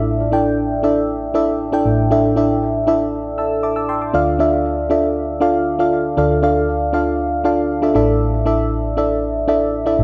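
A straight 4/4 pulse at 118 BPM carries this nostalgic, moody pop passage in D minor, a short stretch cut from a longer piece. A mellow FM electric piano plays solo for the full ten seconds, spanning A1 to E6, its soft, round tone placed up front with a noise layer, a fast attack and decaying notes. Chorus, phaser and tape echo color the keys and lend the dark sound a drifting, wistful character. The harmony rests on Asus4, moves to Dm at 4.1 seconds after a brief piano fill, and returns to Asus4 at 8.0 seconds. A moderate plate reverb surrounds the performance, giving it a soft sense of space.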